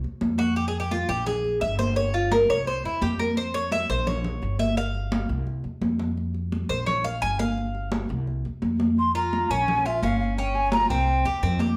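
Latin Cuban son in a guajira vein at 171 BPM in 4/4, this nostalgic fragment of a longer piece opens with a woody, thumpy upright bass with gut strings and ringing, high-tuned congas struck with hard hands, joined moments later by the bright, metallic Cuban tres taking a solo of picked arpeggios on its double strings, some octave-doubled. Chords such as Gm7, C7b13, Bbmadd9 and G7sus4 drift past before the airy, hollow jazz flute enters up front at 9.0 seconds with a mellow vibrato, crisp chiff and rolled-off highs. The band plays live together in one large studio with moderate reverb surrounding the dark bass and the vintage, band-limited congas.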